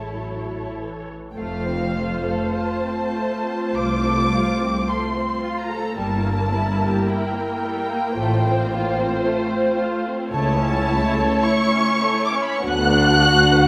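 In a rubato 4/4 at 47-56 BPM, this serene, lyrical slow romantic movement for string orchestra, cut from a longer piece, sets an up-front muted symphonic violin section singing the melody high above a veiled, distant muted studio violin section on the second line, soft-attack muted violas in accompaniment, and a bass of lightly vibrato muted cellos and lush, warm muted double basses, every section bowed con sordino, moving from F major into A major at 10.3 s within a moderate scoring-stage reverb.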